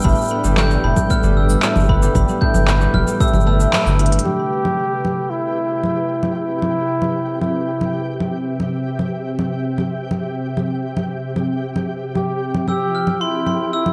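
A straight 4/4 pulse at 114 BPM drives this delicate folktronica piece in C major, with an overdriven electronic kick and a round analog bass anchoring the opening bars while an overdriven organic kit of congas, handclaps, smooth hi-hat and shaker carries on throughout. A mellow sawtooth pad, a flickering grainy texture, fingerpicked harp arpeggios with 12-bit sampler grit and delay, and a bell-like glockenspiel struck with hard plastic mallets fill out the sound, moving from Gadd9 to Cmaj7 and later Fmaj7. After a band accent and a drum fill, a breathy, up-front flugelhorn enters at 4.3 seconds with a jazz-style melody touched with light vibrato and delay.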